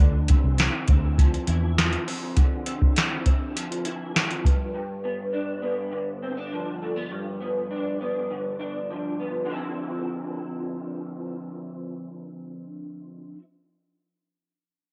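A soft vintage rhythm box enters just after the guitar and bass and keeps a straight 4/4 pulse, with a deep kick, crisp snare and metallic hats. It has a tape-colored, up-front sound that was re-recorded in a large room. This wistful, lonely piece of indie and bedroom pop is cut from a longer work. It is carried by a picked electric guitar through a small old amp, which sounds slightly broken-up, compressed and lo-fi, with ensemble chorus, vibrato and cassette coloring. A dark, round, foam-muted fingered electric bass sits underneath only until 1.9 seconds. The harmony moves from Dm9 to G7 at 4.4 seconds, and the drums drop away at 4.6 seconds. After that, the guitar carries on alone to 13.4 seconds, holding G7 before returning to Dm9, within a digital ambience that suits the cassette home-recording feel.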